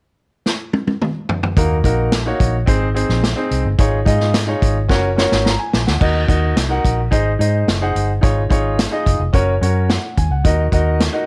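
Uptempo 1960s-style soul with an urgent, passionate mood, cut from a longer piece, opens with a drum fill on a vintage kit that sounds up front, with a tight kick, dark cymbals and a rolled-off top giving it a snug small-room character. At 1.6 seconds a clear concert grand piano with deep bass and a foam-muted, round fingered electric bass enter together, cycling through a minor-to-major progression that repeats after a second drum fill at 4.9 seconds. A small room reverb keeps the whole band close and natural.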